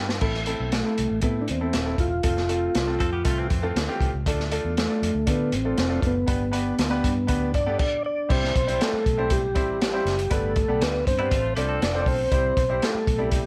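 A mellow, flute-like tonewheel organ carries the melody through a slow rotary speaker and chorus vibrato in this uplifting, uptempo 1960s-style soul piece, over a gritty, saturated breakbeat kit with dark cymbals that sits up front, a round, foam-muted vintage bass, clear, long-sustaining baby grand piano accompaniment, a twangy, bright clean guitar riff with tremolo that plays from the start until 4.1 seconds and returns at 11.2 seconds, and a ringing vibraphone second line with slapback echo in the background of a small room.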